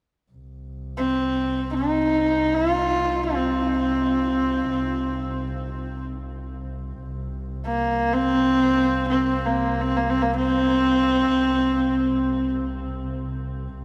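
A huge, wet reverb with a long eight-second tail places this excerpt of Mongolian folk music further back in a vast, windswept space. A rich bowed double bass holds a soft-edged, expressive drone on a low C from 0.3 seconds, and at 1.0 seconds a bright, nasal horsehead fiddle enters up front with a husky, earthy melody. The fiddle's light vibrato and sliding portamento carry it until 12.5 seconds.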